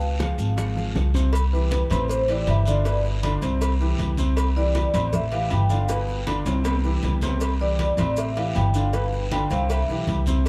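A lively, sophisticated Afro-Cuban jazz groove in straight 4/4 at 158 BPM, cut from a longer piece in C major, with a close, dry vibraphone played with soft mallets taking a mellow, ringing solo from 1.3 seconds over a woody, vintage upright piano with audible action noise and a growly, dark pizzicato upright bass up front. Around them sit bright, compressed congas in the background, very quiet round bongos and cowbell, distant metal-shelled timbales and agogo bells, a raspy guiro, and grainy maracas, with a drum fill at 6.5 seconds. Moderate spring reverb places the band further back in the room as the chords cycle through Cmaj7, Am7 and G7.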